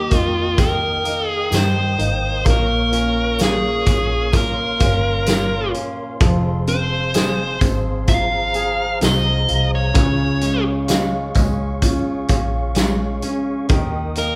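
This excerpt sounds like a band playing live together in one large studio, wrapped in a moderate reverb that lets the notes hang briefly. It is a melancholic pop ballad full of longing, cut from a longer piece. Up front, a dark, smooth, overdriven electric guitar carries the picked melody, while a polished baby grand piano supplies the accompaniment beneath it. In the background, a deep, fingerpicked nylon-string guitar plays arpeggios with audible finger squeak. A soft, flute-like tonewheel organ holds sustained chords with chorus vibrato, key click and a stopped rotary speaker. A round, foam-muted vintage electric bass anchors the low end, and a loose, gritty indie drum kit with a punchy kick and medium-tuned snare enters at 0.1 seconds alongside a very quiet, jingly tambourine.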